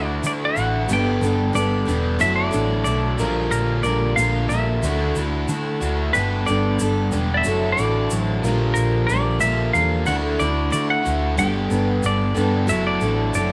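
Folk rock with a heartland rock heart, this short passage cut from a longer piece carries a hopeful, open-road mood in a straight 4/4 feel. A clean, compressed semi-hollow electric guitar carries the melody, its bright picked tone sitting high over the band. Beneath it, a picked steel-string acoustic guitar with fresh strings supplies accompaniment, while a crunchy, double-tracked overdriven guitar plays a riff bathed in spring reverb. A dark, round short-scale hollow-body bass, picked and amped, sits up front, and a grainy egg shaker, close and dry, joins at 0.2 seconds. The harmony circles through Dadd9, Gadd9, Dadd9/F# and a lingering Bb6, and the light room reverb gives the sense of a band playing live together.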